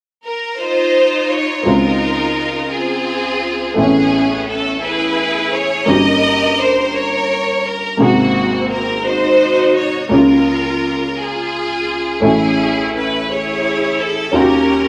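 A lush, bowed string section opens at 0.2 s, carrying the melody with vibrato and a smooth top, and a woody upright piano with short sustain joins at 1.6 s to accompany it. This hopeful, reverent gospel passage moves in a slow 6/8 at 57 BPM in dotted quarters, tuned to A4 = 438 Hz, through rich chords such as Dbmaj9, Amaj9, Ab9 and Eb9. Both parts sit up front in a wet studio reverb, captured as a band playing live in one room, and the passage is cut from a longer piece.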